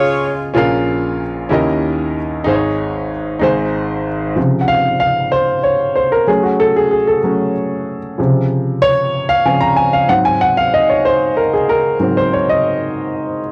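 A slow 6/8 at 63 BPM carries this uplifting, jubilant gospel fragment in Db major, cut from a longer piece, with a bright, punchy saxophone section with light vibrato voicing the melody for only the first 0.5 seconds while a clear, intimate grand piano, its action noise audible, carries the accompaniment from the start through 13.5 seconds. The piano plays alone from 4.4 seconds, moving through Dbmaj7, Gbm and Ab7. Both parts sit up front in a small booth ambience with the soft grain of a home cassette recording, the saxophones dressed in plate reverb.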